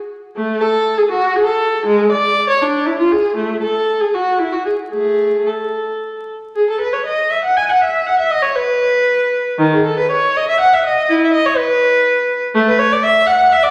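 A vinyl crackle sits beneath a wet recital-hall reverb as a lone bowed viola plays a flowing, serene baroque-style suite movement in A major, in 3/4 at roughly 106-127 BPM with a rubato feel. The viola's warm, smooth tone carries vibrato and an even line spanning D#3 to G#5, entering at 0.4 s and restating its opening material from 6.6 s until it stops at 13.7 s in this fragment cut from a longer piece.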